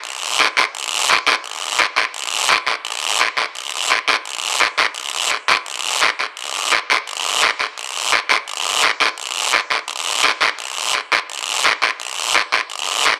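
A raspy, acoustic guiro opens this short cut from a longer Latin piece, sitting close and up front as the only part from 0.0 to 13.2 seconds. The groove is driving and danceable at 170 BPM in a straight 4/4 feel. The dry, close 1970s-style studio sound carries a light touch of small-room reverb.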